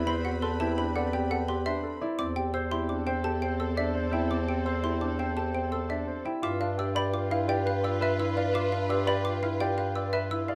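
A bright, propulsive stretch of minimalist classical pattern music at 170 BPM in 6/4 opens with a mellow, up-front bass clarinet carrying the bass, a warm, worn baby grand piano playing arpeggios with long sustain, a ringing, fingerpicked Celtic harp melody, a rich, smooth bowed string section holding chords with vibrato, and a clear clarinet second line in the background, joined at 0.1 s by dry, woody xylophone arpeggios struck with rubber mallets, in a light reverb, as the harmony moves from Cmaj9#11/E and Am7/E to G7 at 6.4 s, where G mixolydian takes hold.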